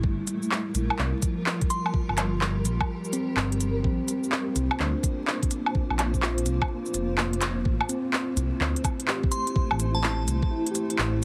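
A dark, detuned sawtooth bass rumbles up front through this nocturnal, ghostly future garage excerpt at 126 BPM in A phrygian, pumping against a knocking, tape-warm kick while a crisp organic electronic kit of hi-hat, handclaps, cabasa and woodblock shuffles with a 16th-note swing. A mellow tine electric piano carries the chords with vintage 12-bit grit and dub echo, a blurred granular cloud pad breathes beneath it, and a glassy FM bell with chorus, phaser and tape echo flickers in briefly at 1.7 seconds and again near 9.3 seconds. The kick drops out at 6.7 seconds before a drum fill leads the harmony from Gm7 and Bbsus2 into Am, all set in light reverb with a heavily compressed radio sound and vinyl crackle.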